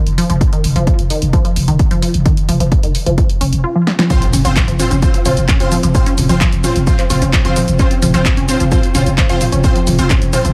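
Driving peak-time techno at 130 BPM in a straight 4/4, this excerpt from a longer piece carries a dark, industrial mood. A squelchy, resonant blip pluck opens the riff from the first moment, treated with phaser, delay and sidechain pumping, while a growling, buzzy 808-style bass holds F1 under overdrive and a low-pass filter. A punchy analog drum machine supplies handclaps, hi-hat, shaker, snare and toms with a short room on snare, clap and hats, and a heavy, layered electronic kick drum enters at 0.4 seconds. After a drum fill and band accent, the drop lands at 4.1 seconds on an F5 chord, bringing in an aggressive, thick rave stab with chorus, phaser and dub echo alongside a very quiet electronic impact. From 5.0 seconds an eerie, metallic inharmonic drone with a slow attack and long release sits in the background, lending a mellow, unsettling haze beneath the mix, which otherwise carries little reverb.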